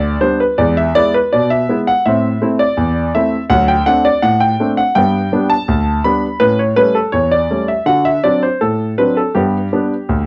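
A clear, up-front concert grand piano plays solo through this playful, jaunty ragtime fragment in G major at 82 BPM in a straight 2/4, its deep bass and short sustain given a worn cassette-tape character in a home recording with light reverb and a dulled top end, as the harmony moves from G through E, Am and D7 back to G, then on to A7 and D7 before returning to G at 9.4 seconds.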